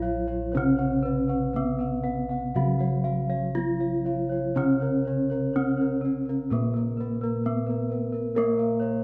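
A steady, straight four-beat pulse carries this hypnotic, stately gamelan passage, cut from a longer piece, with all five parts sounding together from 0.0 to 9.0 s. Up front, a bronze metallophone struck with a wooden mallet carries the melody, its paired tuning producing shimmering beats inside a boxy, small-room sound. Beneath it, a second metallophone played with padded disc mallets supplies a mellow, soft accompaniment with a vintage, band-limited colour. Higher up, a set of bossed gongs, heard dry, full and close-miked, spins arpeggios alongside another wooden-mallet metallophone whose ringing tone is likewise vintage and band-limited. Lower bossed gongs anchor the bass with a round, beating resonance, and a moderate recital-hall reverb lends the whole ensemble a detailed, spacious glow.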